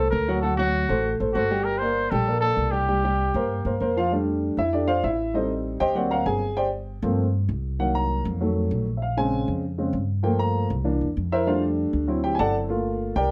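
A trumpet, grand piano and upright bass open together in this sophisticated, danceable Afro-Cuban jazz excerpt, set in F major at a brisk 196 BPM in straight 4/4. The vintage-toned trumpet states a short jazz melody up front until 3.8 seconds, moving between F#4 and C5 over changes that run from D7 to Gmadd9 and C5. From 4.1 seconds the grand piano takes a solo through to the end at 13.3 seconds, its worn, smooth, warm sound covering a broad span from Db3 to A#5 across richer harmony such as Am7b5, D7alt, Gm11 and F7b9. Beneath it the acoustic upright bass plays pizzicato with a woody, steel-strung tone, staying low between G1 and G2. A moderate club reverb gives the trio the feel of a club, and the fragment is cut from a longer piece.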